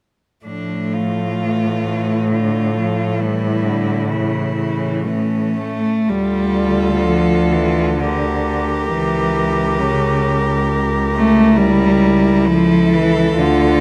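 An up-front cello carrying the accompaniment stands out in this elegiac, melancholic classical passage for four bowed cellos in a rubato 3/4, alongside an equally forward bass cello with a soft attack and expressive portamento, while two smooth, even cellos sing the melody and a second line, each player bowing with rich vibrato, all captured by close, detailed microphones in a moderate recital-hall reverb, and the excerpt moves to a new section at 6.1 seconds before it is cut from the longer piece at 13.8 seconds.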